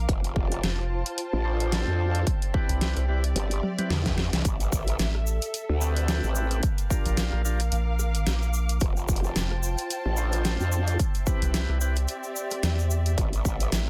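This funky, playful glitch hop clip opens on a rubbery, hollow square bass under a veiled, con sordino string section that sits distant and pumps with sidechain. Almost at once a growling, wobbling bass with chorus and tube saturation joins, along with a punchy overdriven kick and a dubstep kit of hi-hat, rim click, deep snare and toms, all up front and re-recorded in a small room. At 1.4 seconds a gritty tonewheel organ begins playing stabs through a slow rotary speaker and tape echo, also pumping, over chords moving from F6 through Cmaj7, Am9 and Bb6. A drum fill leads into the entrance of a grainy, bright tube shaker at 4.5 seconds, and the organ drops out at 12.0 seconds. The groove swings on the sixteenths, and the dense, heavily limited mix carries light reverb.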